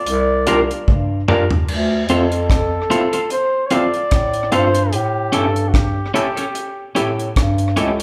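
Recorded as a live band in one large studio room with moderate reverb, this bittersweet, smooth lovers rock reggae excerpt sets a mellow, scooped jazz-style flugelhorn melody up front over a distant, roomy bass clarinet bass line and a dark, dry drum kit with a tight kick, while a barky, gritty overdriven electric piano with fast tremolo and bright, twangy twelve-string guitar stabs in spring reverb fill out the chords, and a drum fill from 0.9 to 1.7 seconds leads into the second section.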